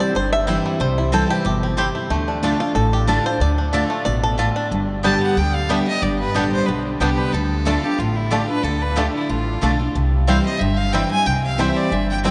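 Bluegrass with a lonesome, rustic swing, cut from a longer piece, where a twangy fingerpicked banjo with analog delay carries the melody over full-bodied picked guitar, thumpy gut-string upright bass and woody mandolin stabs, until a biting, airy-bowed fiddle joins the tune at 5.0 seconds, all set in a vast, echoing cathedral space.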